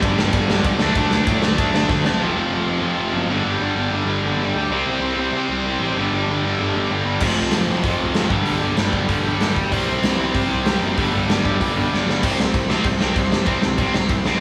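This punk rock excerpt runs at 192 BPM in 4/4 with a rebellious, energetic drive. Two double-tracked, picked electric guitars carry the riff throughout: one bright, tight and distorted, sitting up front, and the other biting, overdriven and warm. Beneath them, a picked electric bass adds a growly, fuzz-laden tone. The acoustic drum kit sounds dark and smooth in a big room, with a punchy kick and medium-tuned snare placed up front; it plays at the start, drops out at 2.1 seconds and returns at 7.2 seconds. The middle stretch shifts to a half-time feel over power chords like G5, F5 and C5, and a drum fill at 11.9 seconds leads into a closing section on C5, all played live in one room with light studio reverb.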